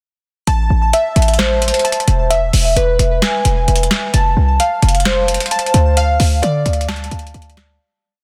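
Glassy digital keys lead this short, menacing trap hook, repeating an arpeggio in threes like a sampled loop, treated with chorus and digital delay, over a half-time feel through Am, E, F and Dm. A punchy 808-style bass holds long sub-bass notes up front, while a booming analog drum machine hits hard with a crisp snare layered with finger snaps and given soft clipping, plus metallic hi-hats with fast rolls. The dense, heavily limited mix sits in light reverb and fades out from 6.0 seconds to its end at 7.8 seconds.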